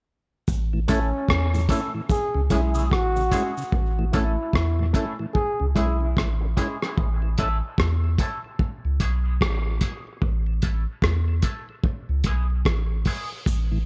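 Light reverb and small-room ambience frame this spacious, hazy dub reggae excerpt in A major at 74 BPM with a swung sixteenth feel, where a round, soft sub bass and a muffled, cloth-damped drum kit of tight kick, hi-hat and rim click sit up front, a mellow tonewheel organ with slow rotary speaker and a twangy, chorused envelope-filtered guitar with dub echo move between A and C#m, a clear trombone second line with light vibrato and dub echo sings until 6.1 seconds, a distant echoing cabasa drops out at 3.7 seconds, and a filter sweep runs from 3.7 to 13.5 seconds.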